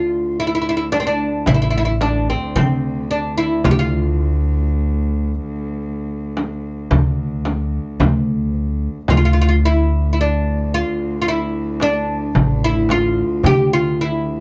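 Turkish makam ensemble music in D makam nihavent, stately and festive at 110 BPM in a straight 10/8, where a woody, fretless, plectrum-plucked oud with double strings carries the melody up front over a dark, veiled drone from a single con sordino cello, a crisp metal-shelled darbuka played with soft hands sits in the background beside a small, bright frame drum struck with hard hands, and a pizzicato upright bass on steel strings joins up front at 1.5 s, the ensemble heard with little reverb in this excerpt cut from a longer piece.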